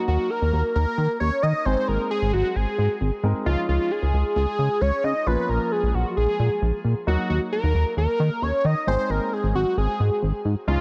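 A thick, detuned unison lead carries a melancholic pop melody with digital delay over a natural baby grand piano from the start, and a glossy, dark chorused synth bass joins up front at 0.1 seconds, driving the chords from Ebm through Ab, Dbadd9 and Bbm in a small, lightly reverberant room across this 10.8-second cut from a longer piece.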